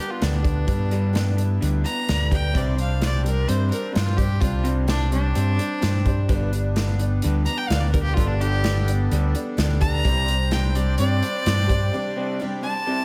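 A straight 4/4 pulse at 128 BPM drives this hopeful, nostalgic folk-rock and heartland-rock excerpt in G major, where a biting, nasal fiddle with analog delay carries the melody as a solo over a punchy, round fingered bass and an airy country drum kit from 0.2 s, while a shimmering, octave-doubled twelve-string with lush chorus, reedy accordion chords, a slightly broken-up electric guitar riff through spring reverb and a mellow, dark baby grand sit in the background of a dreamy, reverb-soaked mix that moves between G and Csus2 before a break at 11.9 s.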